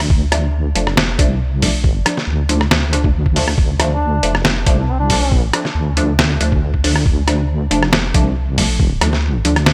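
A deep, dark wobble bass sits up front in this brooding, heavy excerpt of half-time deep dubstep, its detuned sawtooth and sine tone thickened with chorus. Alongside it, a gritty, pitched-down sampler-style kit of hi-hat, rim click and snare, also up front, pairs with a thumpy, tape-warm electronic kick, while muted dub chord stabs with a filter pluck drift through phaser, lush chorus and dub echo. From 3.9 to 5.4 seconds a distant, mellow duduk appears, its folk-style vibrato and scooped notes trailing dub echo inside a roomy digital ambience.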